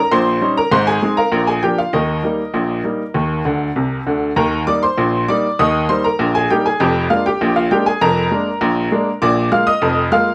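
A bright upright piano carries this cheerful, playful ragtime excerpt on its own, spanning a broad range from the deep bass to the high treble in a straight two-beat metre. Its tone is brilliant and woody, with long sustain, and it sits up front in an intimate sound where the audible action noise of the instrument comes through. The opening passage moves through Eb7, Ab, Bb and Eb, and a short piano fill from 3.5 to 4.4 seconds leads into a new section. That second part leans on Bb7/F and Bb7 harmony as the recording runs to its cut at 10.3 seconds. A light reverb gives the room a touch of air around the piano.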